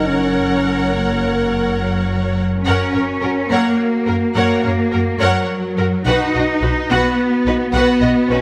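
Up front in the mix, a rich bowed cello section carries the bass line of this majestic, heroic cinematic excerpt in F# major, moving at a stately 71 BPM in 6/8 with smooth double basses sounding beneath it. Above them, focused violins with vibrato sing the melody and a second line, while clear violas fill in the accompaniment and mellow French horns hold sustained chords. The harmony rests on Gb before shifting to B at 6.1 seconds, and the whole ensemble sits in a moderate scoring-stage reverb.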